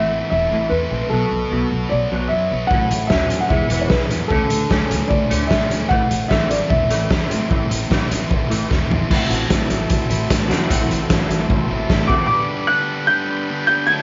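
Indie rock at 150 BPM in 4/4 with a carefree, upbeat feel, this short passage is cut from a longer piece and sits in a moderate echo-chamber reverb with a rolled-off, dusky top end. A dark, mellow upright piano carries the melody with long sustain and a slapback echo, playing from the start until 8.7 seconds and returning briefly near the close. Beneath it, a bright, picked fuzz guitar and a clean, hollow-bodied semi-hollow electric guitar, set back with ensemble chorus and slapback echo, both play riffs, while a thumpy, woody pizzicato upright bass holds the low end. A raw garage drum kit enters at 2.7 seconds, up front with a punchy kick and fat snare in a stone-room sound, adding fills before the chords shift. A vintage combo organ slips in at 9.1 seconds with soft sustained chords in the background, and the harmony moves from A minor through B minor, A6, E and D5 before settling on G for the closing bars.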